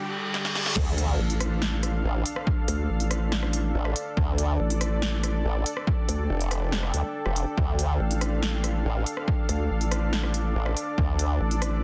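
Two wobble basses dominate this heavy, chaotic dubstep excerpt, one a detuned sawtooth growl shaped by a formant sweep, the other a nasal, resonant vowel sweep with a dark, saturated edge, both up front with chorus and overdrive. The cut opens on a short break where a riser and reverse cymbal build under a drum fill, and at 0.8 seconds the drop hits with an impact, a punchy overdriven kick and the first bass landing on a D minor chord. The big-room dance kit carries a punchy snare, crisp hats, crash cymbal and rim click, overdriven and re-recorded in a large room, driving a half-time feel. Beneath, a lush, bright supersaw pad holds sustained chords with sidechain pumping and a low-pass filter, while a deep, moody ambient pad with chorus and its own reverb enters at 2.1 seconds in the background. The dense, heavily limited master sits in a light reverb, keeping the drop loud and crowded until it is cut off.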